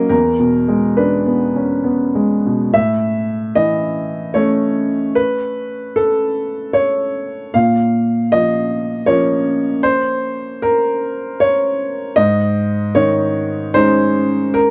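Hopeful and peaceful, this short excerpt of neoclassical minimalist piano moves in a rubato 3/4 at roughly 66-81 BPM, with a solo baby grand playing alone from 0.0 to 14.7 s across a range from E2 to F5. The piano sounds clear, boxy and up front, set in a small room with a dry, close 1970s-style studio character. Its harmony opens on E7, settles onto A at 2.7 s, shifts to B♭m at 7.5 s and closes on A♭sus4 at 12.2 s.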